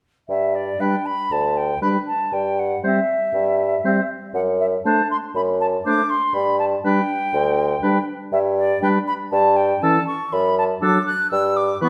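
A quick, classical-period movement for wind quintet, lively and graceful, moves at 120 BPM in 4/4 with a rubato feel, set in G major before turning toward D major at 8.3 s, in a short cut from a longer piece. The silver concert flute carries the melody from D5 up to F#6 with an airy, metallic tone, vibrato and tongued articulation, sitting up front though slightly distant. Beneath it the bassoon holds the bass between D2 and G2, soft in attack and lightly vibrato, also placed up front, with both it and the flute entering at 0.3 s. The oboe's second line, the clear clarinet's accompaniment and the French horn's warm accompaniment join at 0.8 s, filling out the middle of the texture in a classical style. The harmony moves from G through C/G and D7/F# before returning to G and then passing through A7/G, D/F# and Em/G, all heard within a recital hall whose reverb adds a roomy, wet glow.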